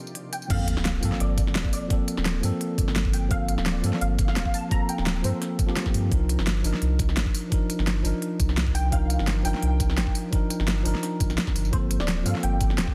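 A clean tine electric piano, played through a combo amp and trailed by dub echo, opens this melancholic, dreamy liquid drum and bass excerpt alongside a soft, round pluck melody carrying ensemble chorus, cassette-tape colour and tape echo, while a shimmering, ethereal pad is heard only briefly at the start and again in the final moments. At 0.5 seconds the drop arrives with a background sub drop impact, a knocking, layered electronic kick and a deep sine sub bass that sits beneath everything, matching the kick as the loudest part. A produced pop drum kit, in place from 0.1 seconds, adds a fat snare, crisp hi-hats, crash cymbal and tambourine, with studio reverb on both kit and kick and a light swing on the sixteenths. The dark, wave-folded pluck pauses around 5.9 seconds and returns at 8.7 seconds, floating over a slow movement between minor eleventh chords. The master is dense and heavily limited, with a dry overall room.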